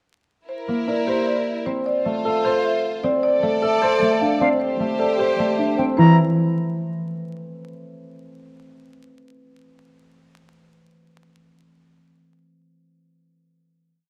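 Close, detailed miking with light reverb and vinyl crackle frames this short, hypnotic and bright minimalist classical piece in 7/8 at 306 BPM in C mixolydian, where a woody rosewood marimba carries a repeated melodic cell, an up-front, thumb-plucked harp rings beneath, a dark, mellow baby grand cycles arpeggios, a lush violin section holds swelling vibrato chords over C7, Dm7 and Am7, and an airy, distant silver flute adds crisp arpeggios from 3.6 seconds before the music settles on a final C7 at 6.0 seconds.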